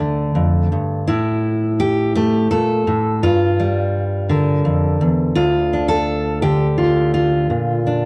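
In a rubato 3/4 around 84 BPM, this wistful, haunting folk fragment, cut from a longer piece, features a solo fingerpicked steel-string jumbo acoustic guitar, full-bodied and up front with audible finger squeak, moving through Dm, A5, Gm7, a chordless stretch and Bb under light reverb, all heard through worn cassette tape with warbly pitch drift and lossy compression artefacts.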